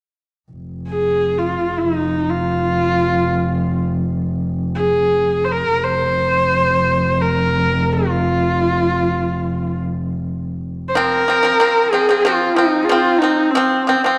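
Vast and windswept, this Mongolian folk excerpt sets a husky, bright horsehead fiddle melody full of vibrato and portamento over a dark, bowed double bass drone, until at 11.0 s the bass stops and a dry, percussive pipa takes up fingerpicked arpeggios beneath the fiddle, heard within a reverberant echo chamber.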